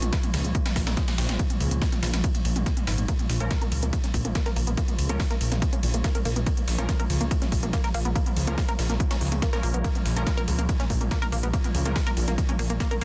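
Driving peak-time techno with an industrial edge, heard in a short cut from a longer piece that holds a single B-flat minor chord throughout. A thick, beating detuned saw bass pumping against the sidechain sits up front beside a punchy electronic kick, while a techno kit adds smooth hats and toms. Underneath, a breakbeat sampler-style kit brings a gritty, pitched-up, high-tuned snare and ride cymbal, both high-pass filtered. An eerie, metallic FM drone hovers in the background with chorus, phaser and its own reverb, its slow attack and long release giving it a warbling, vintage shimmer. From 3.1 seconds a tight sequenced synth riff with a filter pluck enters, treated with chorus, phaser and delay, and at 3.4 seconds an aggressive unison rave stab with a bright filter sweep joins far back in the mix before dropping out at 12.0 seconds. The sound is dry, dense and heavily limited, with a modern master.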